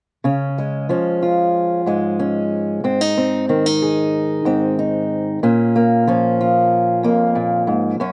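Folk in Db major, this brief, hopeful passage moves at 93 BPM in straight 4/4 and is cut from a longer piece. A single fingerpicked acoustic archtop guitar carries the accompaniment from 0.2 to 8.1 seconds, ranging from F2 up to Ab4. Its warm tone sits up front in the mix, touched by a slapback echo that adds a subtle doubled edge. The harmony steps from Db to Ab at 2.8 seconds and then settles on Bbm at 5.4 seconds. Captured outdoors with little reverb and a dry sound, the recording keeps the focus on the guitar's warm character.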